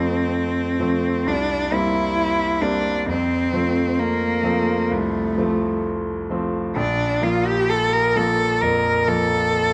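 In a slow, rubato 4/4 at 65 BPM, this short passage cut from a longer romantic classical piece for cello and grand piano unfolds with a lyrical, tender mood in Bb major. A single bowed cello carries the melody between A3 and Bb4, its tone clear and focused with vibrato, placed up front. The concert grand piano accompanies from Bb1 up to C4, sounding bright and brilliant with a deep bass, an open character and a long sustain. The harmony moves from F to C7 at 1.3 seconds, returns to F at 3.1 seconds and settles on Bb5 at 6.8 seconds. Both instruments play throughout the 9.7 seconds, framed by a moderate recital hall reverb.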